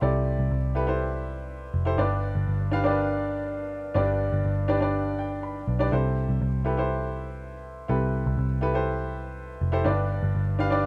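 Piano-driven pop in C major at 122 BPM, this uplifting, hopeful excerpt pairs an intimate, woody upright piano, its action noise audible, with a dark, round, foam-muted electric bass picked up front, both playing throughout. The harmony moves between C6 and G, and the piano adds a short fill from 4.9 to 5.9 seconds. Light reverb gives the rough home demo mix a small sense of space.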